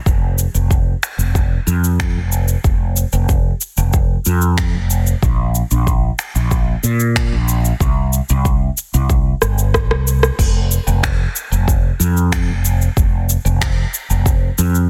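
A straight 4/4 groove at 93 BPM sets an easy, unhurried pace for this blissful, sunny sunset chillout piece, tuned slightly high at A4 = 441 Hz and cut from a longer work. A deep, layered electronic kick drum, re-recorded in a small room, anchors the beat, while a smooth, produced R&B drum kit adds cabasa, crash cymbal, finger snaps and rim clicks, its snare roughened by overdrive and soft clipping. Sitting up front and loudest in the mix, a mellow fretless electric bass moves between F1 and Bb2 with a dark, round, punchy tone, made lush by chorus. A drum fill from 9.4 to 10.4 seconds leads into a new section, and the kick drops out at 14.4 seconds as the bass and kit carry on to the end. The sound is dry and close, with little reverb and a dense, heavily limited modern master.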